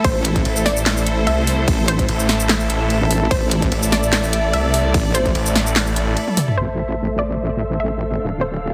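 Half-time 4/4 at 147 BPM with a light sixteenth-note swing drives this heavy, menacing wobble dubstep drop in A minor, where a punchy layered electronic kick and an up-front big-room kit of handclaps, snare, metallic hi-hats, ride, shaker and filtered toms pound beneath a chorused, detuned wobble bass and a snarling, growling distorted saw bass with a moving notch. Above them, a tape-echoed unison pluck carries the melody, a distant, lush symphonic string section holds pumping low-passed chords, and a cloudy granular pad drifts mellow in the background. The kick drops out before a drum fill at 6.3 seconds, after which the kit stops at 6.6 seconds and a filter sweep moves across the strings as the harmony shifts from Am to Dm, all under heavily compressed, radio-like polish and a moderate plate reverb.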